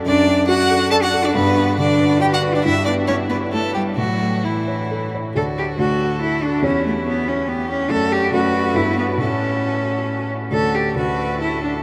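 Bathed in a huge, echoing reverb with a faint mains hum, this cut from a quick, graceful and spirited classical-period piano trio movement in D major (128-144 BPM, 3/4, rubato feel) sets a clear, focused violin melody with vibrato over a rich, intense cello second line and an up-front, dark, mellow baby grand piano accompaniment with audible action noise, moving into a new section at 5.4 seconds.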